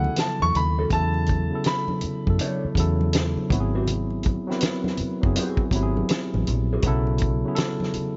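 A clear, smooth grand piano opens this short neo-soul excerpt with a high, up-front melody touched by slapback echo, over a worn, slightly out-of-tune tine electric piano that is lightly overdriven through a combo amp. A dark, foam-muted vintage bass and soft-handed, ringing congas sit beneath from the start, and a soul drum kit arrives at 0.2 seconds with a fat snare, tight kick and hi-hat, mid-forward and rolled off on top. The piano melody ends at 3.1 seconds, and the electric piano carries the harmony through to the close. An electric guitar through a small old amp adds a quiet, compressed second line from 0.8 to 6.8 seconds, its picked, slightly broken-up lo-fi tone colored by wah and subtle chorus. The R&B groove moves at an unhurried 81 BPM in 4/4 with a gentle sixteenth-note swing, passing from a rootless Dmaj7 through Esus4 and G#7alt to B7sus2. Light reverb and small-room ambience give the introspective mood an intimate, softly muted glow.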